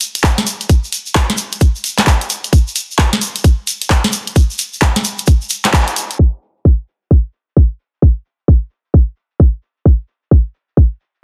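A swung 16th-note UK garage groove at 131 BPM in 4/4 sets a moody, late-night tone. It pairs a tight, layered electronic kick up front with a punchy, tape-warm analog drum machine of handclaps, low-passed hi-hat and snare re-recorded in a small room; a band accent lands at 5.7 seconds, and the drum machine drops out at 6.2 seconds. A grainy, bright egg shaker runs throughout, and a filter sweep carries the second half of this dry, dense, heavily limited fragment of a longer piece.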